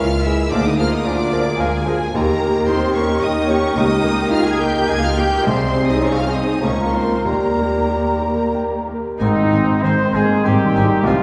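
A clear, intimate baby grand piano carries the lyrical, passionate melody of this romantic movement in Ab major, moving in a rubato 3/4 at 92-113 BPM, joined high above by a violin section singing with vibrato and portamento, while a second violin section, clarinet and a soft, hollow small flute group weave second lines. Beneath them, dark violas and a very quiet bassoon fill the accompaniment, lush cellos and double basses hold the bass, and a mellow French horn section sustains chords from 0.5 s. At 9.2 s, where the harmony settles on Ab, a distant oboe joins the inner lines, a trumpet adds prominent stabs and a dark tuba deepens the bass, all blooming in a reverberant scoring-stage room heard from further back.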